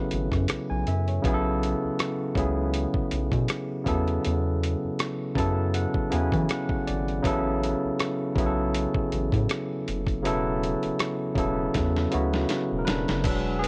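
Sultry and late-night, this short neo-soul and R&B passage sits at an unhurried 80 BPM in 4/4 with a gentle 16th-note swing, drifting through F#m11, Bsus2, Esus24, A69 and E9sus4 chords. A barky tine electric piano carries the accompaniment up front, clean through a combo amp, with a fill between 5.0 and 7.2 seconds. Underneath, a rubbery square bass gives a hollow, bouncy low end with a resonant filter pluck and dark sustain. A dusty, sampler-style drum kit sounds compressed and gritty, with a thumpy kick, medium-tuned snare, rim click, hi-hat and crash, and a drum fill runs from 11.7 to 13.2 seconds. Only at 13.2 seconds does a tonewheel organ slip in with clear, lightly overdriven sustained chords, key click and a slow rotary speaker, just before the cut. The whole passage is wrapped in a worn, warbling cassette-tape ambience with wavering pitch drift.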